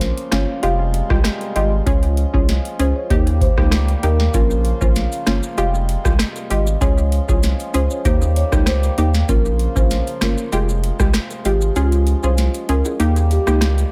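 A booming analog drum machine drives this hypnotic, sultry dancehall cut at 97 BPM in F minor, its deep kick, crisp snare and metallic hats up front alongside a thick, saturated sub bass, with the kick dropping out from 11.8 seconds. Punchy, detuned chord stabs with chorus and analog delay cycle through Bbm, Fmadd9, Db and Eb over a reedy, breathing harmonium that pumps beneath them. A woody, vintage-toned marimba carries the melody through its own delay, and ringing maracas and timbales join at 4.3 seconds in an echo-heavy mix with light reverb.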